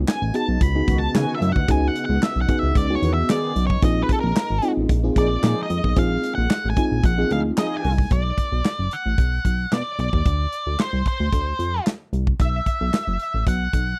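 An octave-fuzz lead guitar carries the melody from the start, its picked, distorted tone dark and gritty as it takes a solo through the first 8.1 seconds of this late-night, funky slice of early-eighties boogie funk in a straight 4/4. Beneath it, a chorused synth bass sits up front with a glossy, retro pulse-and-sawtooth sound, while a modern acoustic drum kit with a tight kick, medium-tuned snare, hi-hat and handclaps drives the groove from a close studio room. An FM electric piano with a soft pad layer adds lush, dreamy, warbling chords, joined by mellow synth brass that offers a round, brassy second line with a filter sweep, and a very quiet, silky string machine holding sustained chords low in the background. The opening passage moves over suspended ninth chords before the piano, brass and strings drop out around 8.1 seconds, leaving guitar, bass and drums to push through Bm, Dm7 and B5 until the cut at 14.0 seconds. 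The mix is dry and close, with little reverb, in a 1970s-style studio manner.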